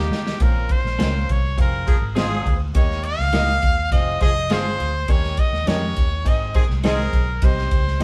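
The brilliant, forceful trumpet leads this short cut from an uptempo 1960s-style soul number, its jazz-style solo line sung with light vibrato and scooped notes that give it an urgent, passionate edge. Beneath it a bright saxophone section carries a second line in a pop style until about 7.3 seconds, while a baby grand piano with short sustain fills in the harmony. A dark, round, foam-muted fingered electric bass drives the low end with a punchy, amped tone, and an airy, polished country-style drum kit opens with a brief fill, then sits up front with a punchy kick, ride cymbal and medium-tuned snare. From 1.0 seconds a clean, twangy electric guitar adds compressed, picked stabs in the background, its pitch drifting with a warbly waver. The band sounds as if playing live in one room under light reverb, and a vinyl crackle lends the recording a vintage patina.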